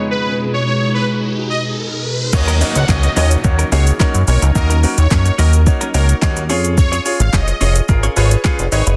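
A glossy, nasal chorused synth bass sits up front in this confident, driving dance-pop piece in Eb minor at 108 BPM, entering with sidechain pumping at the drop at 2.3 seconds alongside an overdriven, produced R&B kit with a soft kick, fat snare, metallic hats, handclaps, shaker and crash. Before that, an ethereal, airy pad with built-in reverb holds an Abm chord under a filter sweep and a background riser, while a brilliant concert grand piano and a smooth soft supersaw melody with dub echo carry on throughout, both low-pass filtered and pumping. After the drop, a clean, picked, direct-recorded electric guitar riff with lush chorus stays in the background as the harmony moves from Ebm7 to Db/F at 6.5 seconds, all within a dense, heavily limited master with light reverb.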